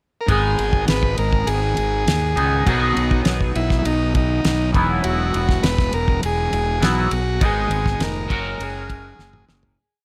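Psychedelic rock in G# minor at 101 BPM with a dark, trippy mood, where a buzzy, up-front combo organ with tape echo sings a free melody over a bright, twangy double-tracked guitar riff with phaser and ringing chords, a round, fuzz-overdriven fingered bass driving eighth notes, and a dry, damped 70s drum kit with a fat snare and tight kick, moving through G#m, B6, Esus2 and F#add9 in studio reverb before fading out from 7.4 seconds under a closing drum fill at 9.2 seconds.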